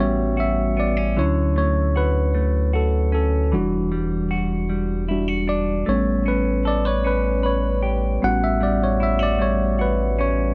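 This slow, sultry six-eight R&B groove at 51 BPM features a worn, slightly out-of-tune tine electric piano taking a solo up front, moving through lush extended chords from A13 to Dmaj7, Em9 and A9 across the 10.5 seconds. Beneath it a rubbery, bouncy square-wave bass sits forward in the mix with a nasal, resonant filter pluck and a moving notch, while a dark, fingered semi-hollow electric guitar adds a quieter second line. The dry, close sound of a 1970s-style studio gives this cut from a longer piece a late-night intimacy.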